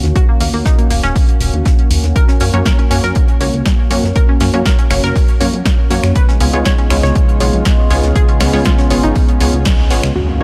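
A punchy, tape-warm electronic kick sits up front in this bittersweet, dreamy progressive house passage at 120 BPM in a straight 4/4, cut from a longer piece and moving through Ebm7, Gb and Db7. Beneath it, a plucky analog bass with tube saturation and a mellow, wave-folded, funky character carries the low end, while a smooth, warbling vintage pad holds sustained chords with chorus and sidechain pumping, a filter sweep running across it from 0.0 to 10.2 seconds. A round, detuned analog pluck spins arpeggios through chorus and delay, joined at 2.4 seconds by lush unison pluck stabs with delay and pumping of their own. The house drum kit adds low-pass filtered hats, snare, finger snaps and crash cymbal, and a dry, damped 70s kit with a fat snare and rolled-off top sits in the background behind it. A band accent lands at 9.7 seconds before an electronic impact arrives at 10.2 seconds, all set in a digital ambience.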